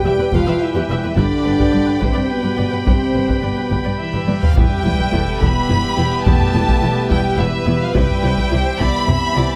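Pounding taiko drums struck with heavy sticks drive this heroic, relentless stretch of epic orchestral film score, their close, dry hits sitting at the front of the mix from 0.3 seconds. Over a steady 106 BPM in 3/4 and a dark E phrygian colour, a lush violin section carries the melody with soft-attacked, expressive vibrato, while a second violin line adds a focused inner voice beneath it. Mellow French horns, a background trombone section and a nasal cornet stop on pipe organ with tremulant hold sustained chords, moving from Em to G and later to C. Woody violas, expressive cellos and a dark double bass section with gliding portamento fill out the low and middle of the orchestra from behind. A drum fill at 4.1 seconds leads into a reverse cymbal at 4.4 seconds and a huge sub drop impact at 4.6 seconds that opens the second section, all set in a moderate scoring-stage reverb captured with close, detailed microphones.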